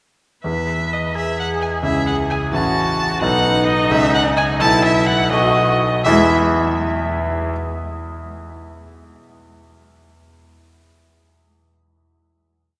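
A long, wet cathedral reverb surrounds this short, spirited classical-period piece for piano trio in E major, moving at a quick 85 BPM in a straight 6/8. The violin carries the melody up front with focused, vibrato-rich bowing, while the cello adds a warm, expressive counter-melody and sustained chords, with soft attacks and portamento. The polished, intimate concert grand, with deep bass, long sustain and audible action noise, supports them with block chords and rings on alone after 6.3 s before the final E chord fades at 7.5 s.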